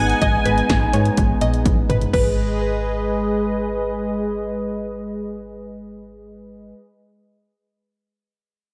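A straight 4/4 pulse at 125 BPM drives this melancholic, cool synth-pop excerpt in G# minor, with a punchy analog drum machine up front that carries a large-room character, plays a fill at 1.7 seconds and drops out at 2.2 seconds. A funky, detuned polysynth comp with chorus and analog delay states a brief melodic figure on G#5 in the opening 1.6 seconds, while a brassy, bold sawtooth pad holds sustained chords over a snappy FM bass with a metallic attack, and a round, full-bodied analog pluck adds a second line with chorus and delay. The mix is bathed in a moderate plate reverb that gives it a dreamy, soaked sheen.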